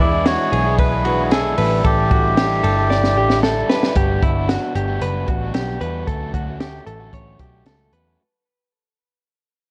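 Bright and breezy, this short excerpt of jangly indie pop at 114 BPM in D major sets a reedy, breathy melodica melody over a mellow, distant woodwind section for the first few seconds, joined throughout by crunchy overdriven guitar, twangy clean electric guitar arpeggios with spring reverb, a round, foam-muted picked bass up front, and a dry cocktail drum kit with a punchy kick, high-tuned snare and gritty sampler texture that enters at 0.3 s and fills from 2.9 s before everything fades out from 4.0 s over Gmaj7 and Dmaj7 chords, all carrying a cassette-tape sheen.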